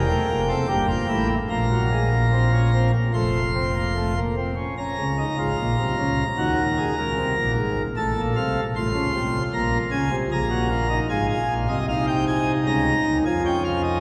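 Driving and serious, this classical excerpt is a baroque-style four-part fugue for solo pipe organ in a steady 4/4 with a straight feel. The organ's principal chorus sounds full and up front, with a baroque voicing and a distinct chiff. Its parts span a broad range from deep bass notes around E1 up to C6 in the treble. The instrument sits in a cathedral-like reverb with a long five-second decay, and the listener seems placed further back in the room, so the resonance hangs heavily around every phrase. The harmony leans on diminished and minor chords, moving from an opening section into a second passage at 4.8 seconds. The passage is cut from a longer piece, ending at 14.0 seconds.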